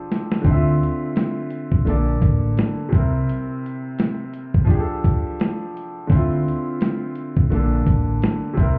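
A swung 85 BPM lo-fi hip hop groove in D minor opens with a drum fill from a gritty, compressed sampler-style kit with a thumpy kick, joined at 0.4 s by growly pizzicato upright bass, while an up-front, brilliant upright piano with audible action noise, long sustain and a cassette-tape tint moves through Dm9, Bbmaj7, C7 and F69 chords, the reflective, nostalgic piece sounding muffled as if heard through a wall amid club ambience, with a break from 3.3 to 6.1 s.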